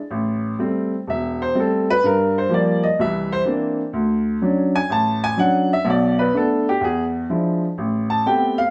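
A clear baby grand piano opens at 0.1 seconds and carries this short solo jazz passage alone, cut from a longer piece, with a late-night, smoky mood. The playing swings in four, the eighth notes leaning into a relaxed lilt as the piano ranges from deep low notes up into its upper register. Its tone is open and up front, with long sustain letting each chord ring into the next. The harmony moves through Am7, Gm7, C9, Dmaj7, Bm7 and a tense E7b9 before settling on Am9. Moderate studio reverb and the ambience of a small room surround the instrument, giving the sound an intimate, live-in-the-room feel until the passage ends at 8.7 seconds.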